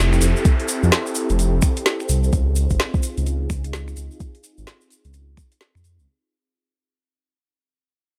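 A swung two-step garage groove at 128 BPM sets up this soulful, bouncy UK garage fragment, where a knocking, overdriven electronic kick and an up-front garage kit of finger snaps, metallic hats and a woody snare ride over a grainy, bright tube shaker, while a deep, rumbling detuned saw bass and a silky, warbling vintage string machine with ensemble chorus both pump and carry filter sweeps through a shift from Fmaj9 to Dbmaj9 at 2.3 s, an electronic downlifter sounds until 2.3 s, and the whole dry, gritty cut fades out.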